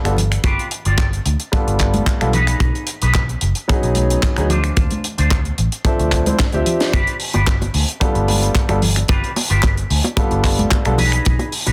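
The clear grand piano opens the cut up front, its polished chords softened by a low-pass filter and trailed by delay, as a round, foam-muted fingered electric bass pushes punchy low notes underneath. This is sunny, groovy nu-disco in G mixolydian at 111 BPM, with a light 16th-note swing that keeps the 4/4 pulse loose. A tight funk kit of finger snaps, handclaps, hi-hat and a high-tuned, softly clipped snare joins with congas and bongos played with soft hands in the background, while a clipped, up-front kick arrives at 0.4 seconds. At the same moment a dark, clean electric guitar enters with a picked riff through an envelope filter, bathed in lush chorus and delay. The chords cycle through G7, B6 and Dm7, and a drum fill at 6.4 seconds leads back to G7 in a small-room setting with light reverb and a dense, heavily limited modern master.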